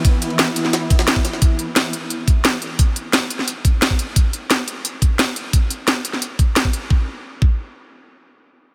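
A swarming, detuned drone of sustained chords opens this dark technical drum and bass excerpt. Its granular sine tone has a slow attack, a long release and its own built-in reverb, all under sidechain pumping. Alongside it from the start, an up-front electronic kick knocks while a layered kit delivers a cracking snare and crisp hats, both re-recorded in a small room. Further back, a gritty, tape-toned, compressed sampler-style jungle kit adds a pitched-up, high-tuned snare and a high-passed ride cymbal. The drone and the jungle kit drop out at 1.4 s, leaving the aggressive, futuristic drums to drive on until the main kit stops at 6.8 s and the kick continues alone to 7.5 s. The whole mix is dreamy and soaked in a huge ambient reverb.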